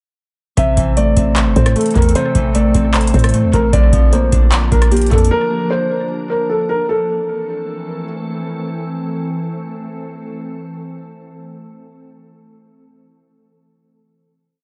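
Brooding and eerie, this short half-time trap piece at 152 BPM in A phrygian opens at 0.6 seconds with a dark, boxy concert grand piano looping its melody over a fingerpicked Celtic harp arpeggio, both bathed in tape echo, while an overdriven analog drum machine with a deep kick and metallic hats drives fast hi-hat rolls above long, sliding 808 sub-bass notes until 5.3 seconds. A glassy, warbling FM pad with ensemble chorus enters at 1.3 seconds, joins the piano and harp on the final A minor chord, and sustains it in an echo-heavy digital ambience until 10.4 seconds.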